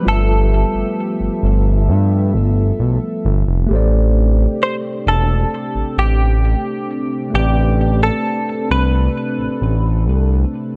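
The production is dark and close, with very little reverb, and a smooth, gliding synth bass sits up front. This excerpt of contemporary R&B moves at an unhurried 66 BPM in 4/4 with a straight feel in A minor, carrying a longing, sensual mood. The bass, built from detuned sawtooth and square waves with a fast attack and portamento, sustains its notes between E1 and G2. A mellow analog pad with a slow attack, long release and chorus holds chords from C3 to E5. A clean tine electric piano supplies accompaniment, and a bright, twangy direct-recorded guitar, picked and compressed, carries the melody between G4 and C5 through analog chorus and delay until it stops at 10.0 s. The harmony rests on G13 before moving to Am11 at 3.7 s, where the second section begins.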